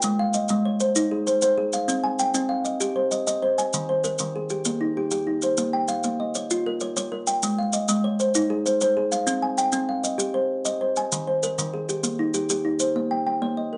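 A woody, airy kalimba leads this trance-like, hypnotic excerpt of southern African traditional music, spinning interlocking mbira-style arpeggios from Eb3 to Ab5 in Bb dorian at 130 BPM in a straight 12/8. Close, grainy maracas sit up front beside it from the start until 12.9 seconds, while the kalimba carries on to 13.8 seconds. The harmony circles Ab, Cm, Eb and Bbm twice, and a moderate studio reverb and a soft, rounded top end give the sound a gentle sheen.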